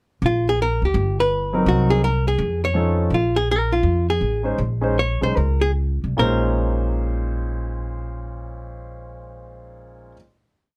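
Closely miked and nearly dry, this short, smoky late-night piece of small-group swing and bop in Bb minor moves at 141-167 BPM. A woody, thumpy upright bass plays a pizzicato two-feel, and a dark, clean, hollow-body archtop guitar picks a bebop-style theme that returns, joined at 1.5 seconds by an intimate grand piano whose action noise can be heard under its syncopated drop2 comping, before the tempo slows from 3.1 seconds into a long-sustained final chord.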